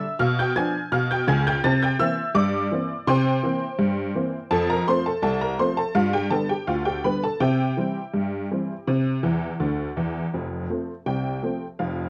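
A detuned, jangly honky-tonk upright piano plays alone from the start, sitting up front in this jaunty, cheerful ragtime fragment in a straight 2/4 and spanning F1 to A6 as it moves through Bdim7, C7, F, G7 and C. A piano fill at 9.2 s leads into a new section at 10.3 s that lands on F, before the fragment cuts off at 12.1 s. Moderate studio reverb gives the piano some space, and the sound carries the worn, warbling pitch drift of old cassette tape.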